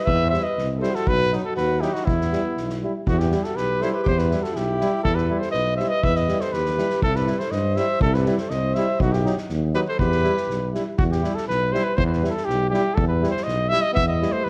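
A moderate recital-hall reverb surrounds this fiery, virtuosic Balkan brass band passage, cut from a longer piece and set in a straight two-beat metre. The punchy, mellow trumpet carries the melody up front with light vibrato and a smooth top, while a close-miked alto saxophone with a warm vibrato plays a second line before dropping out at 10.7 seconds and returning at 13.9 seconds. Underneath, a close-miked tuba anchors the bass up front with its own light vibrato, and a soft-mallet acoustic drum kit adds kick and snare, its boomy kick and rolled-off top giving the rhythm a rounded, studio-room feel. Further back, a brilliant, distant trombone and a clear, vintage-toned euphonium provide accompaniment in the background. The harmony moves between E minor and B, with a turn to C before settling back on E minor, all played in a classical style.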